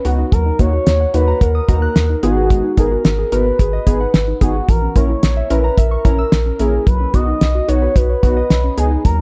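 A driving, cool synth-pop excerpt opens with all five parts together: a damped 70s drum kit with a fat snare and tight kick sits up front, beside a round, deep analog bass. Over them, an expressive portamento lead carries the melody with vibrato, chorus and analog delay, its wave-folded, resonant tone smooth and vintage, while a warbly, dusty lo-fi pluck spins arpeggios through chorus and delay. Mellow, detuned analog keys with chorus fill in the chords, moving from D#m through G#m7 and A#dim to Badd9 before dropping out at 8.9 s, all in a dark production with small room ambience.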